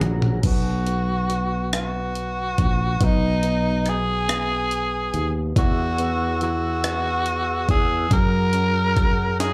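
A romantic, heartfelt six-eight pop ballad excerpt heard live through a club PA, where a gritty, pitched-up jungle sampler-style drum kit with a thumpy kick opens on a short fill before a raspy, growling tenor saxophone carries the melody from 0.5 seconds over an up-front, growly fretless bass with lush chorus, an intimate concert grand piano with audible action noise in the background, and a soft, flute-like tonewheel organ through a slow rotary speaker that returns at 5.6 seconds as the chords move from B5 to Eadd9 and F#add9.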